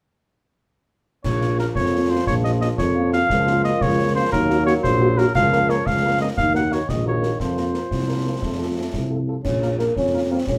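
Heard from further back in a studio room with moderate reverb, this short excerpt from a longer military-style march for wind band sounds resolute and stern. It moves in a straight 6/8 at 117 beats per minute in Bb minor. A warm, classical-style cornet carries the melody up front from 1.2 s, set over a clear trombone section holding sustained chords and a French horn section with light vibrato filling in the accompaniment in the background. A mellow tuba anchors the bass, while concert snare drum, clash cymbals with a dark edge and concert bass drum drive the acoustic percussion from what sounds like a small room. The harmony passes through Bbm, Ebm7 and Ebm to an Fsus4 and F before returning to Bbm, where a euphonium with light vibrato adds a second line up front from 9.4 s.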